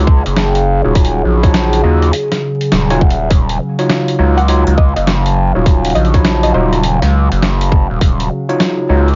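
Vinyl crackle sits over a light reverb and a dulled, rolled-off top end in this glitch hop excerpt, which rides a gritty, funky groove at 102 BPM in 4/4 with a 63% swing on the sixteenths, all on a single Ebm9 chord in Eb minor. Up front, a saturated synth bass growls with an aggressive, evolving, resonant edge, while a tight, layered electronic kick punches from 0.1 to 8.2 seconds. A pitched-down boom bap sampler-style kit adds hi-hat, rim click and a medium-tuned snare with a compressed, tape-warm grit. A barky overdriven tine electric piano plays bright stabs through a combo amp, colored by 12-bit sampler crunch, digital delay and sidechain pumping. Behind it, a mellow, warbling pad holds sustained, detuned chords with chorus, phaser and its own reverb, pumping in the same way. At 4.4 seconds a dark, woody wave-folded pluck slips in from the background with a short melody through chorus, cassette tape and delay.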